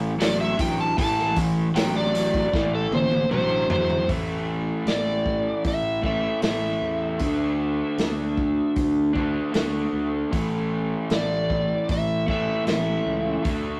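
An overdriven slide guitar leads this heavy, smoky blues rock and southern rock excerpt, its dark, fingered tone sitting up front from 0.2 seconds and carrying a solo through the opening stretch before the music shifts at 4.1 seconds. Beside it, a raw garage guitar plays the riff in a double-tracked, picked, overdriven sound, also placed up front. Underneath, a fingered electric bass adds a bright, growly fuzz, heard both direct and through an amp. A vintage acoustic drum kit keeps a straight four-beat feel with a punchy kick, a medium-tuned snare, hi-hat and toms, all muffled and lo-fi with a rolled-off top, and it plays a fill from 2.5 to 4.1 seconds. The whole trio sounds like a rough rehearsal-room take, with a wet small-room reverb and warm saturation.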